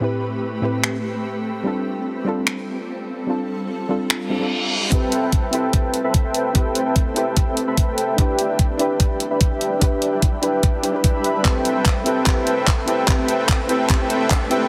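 A smooth, detuned supersaw riff enters up front at 4.9 seconds over a knocking, overdriven electronic kick, lifting this bittersweet, emotional future bass passage at 147 BPM in a half-time feel in A minor, with a filter sweep running through the build-up. Underneath, a dark, round pluck carries the accompaniment with chorus, delay and sidechain pumping, while a shimmering, ethereal pad holds sustained chords from Am9 through G9sus4 and Em7. A pop kit of finger snaps, handclaps and warm hats plays from 0.8 seconds on, a very quiet reverse cymbal and riser lead into the build, and a drum fill arrives at 11.4 seconds, all within a heavily compressed, radio-like sound with light reverb.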